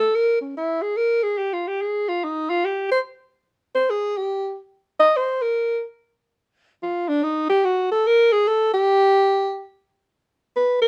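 A light reverb surrounds a lone alto saxophone placed up front, its tone warm with a smooth top and scooped notes in a jazz style. This smoky, moody jazz fragment, cut from a longer piece, swings in 3/4 at 144 BPM, the saxophone playing solo throughout. Its opening phrase gives way to a new section at 6.4 seconds, running to 10.9 seconds.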